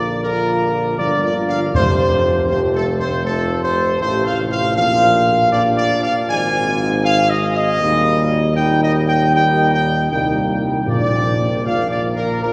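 A solemn, majestic classical brass passage in Bb major at 79 BPM opens with a tight, smooth-topped trumpet section carrying the melody up front. Beneath it, a mellow French horn section and a dark, soft-attacked trombone section hold sustained chords in the background, while a tuba supplies the bass, all three with light vibrato. Round, soft-mallet timpani sound at 1.7 s and again at 10.9 s as the harmony moves from Bb through Ab and Eb back to Bb, and a wet cathedral reverb sets the whole ensemble far back in an echoing space.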